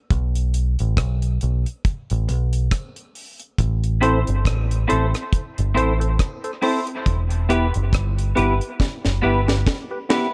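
A slow, swung groove at 69 BPM in 4/4 sets up this spacious, meditative dub reggae excerpt, with the sixteenths carrying a gentle lilt. An upfront acoustic drum kit sounds dry, with a high-tuned snare, a tight kick, rim clicks and hi-hat. It opens as a break alongside a deep, round, punchy electric bass that sits low and dark. At 4.0 seconds a clean, compressed semi-hollow guitar with a scooped, hollow-body tone and a percussive organ stab enter together. Both are softened by a low-pass filter and carried off by chorus and dub echo, and the organ's sine and triangle tones with a noise layer give each fast-attack stab a decaying, shadowy edge. The harmony moves from A minor to E minor over light small-room reverb, and a drum fill from 8.8 seconds rounds off the passage.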